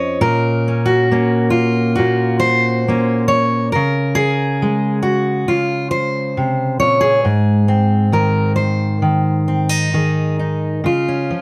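Hopeful and pastoral, this short folk excerpt features a lone fingerpicked steel-string acoustic guitar in Db major at a rubato 68 BPM in 4/4, its full-bodied jumbo tone warm with fresh strings and sitting up front in light reverb. The guitar covers F2 to Eb5, moving from Gb/Bb at 0.2 seconds through Db5 and Ab before settling on Db at 10.9 seconds.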